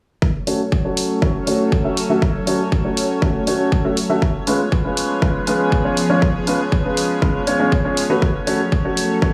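Progressive house at 120 BPM in F# minor, dreamy and driving, cut from a longer piece, where a punchy, up-front electronic kick and layered hi-hat drive a boxy grand piano playing filtered stabs with digital delay and a filter sweep, over an evolving wavetable pad of bright, morphing sustained chords with chorus, phaser and sidechain pumping, moving from F#m to C#7 at 4.2 seconds and back to F#m at 8.2 seconds in light studio reverb.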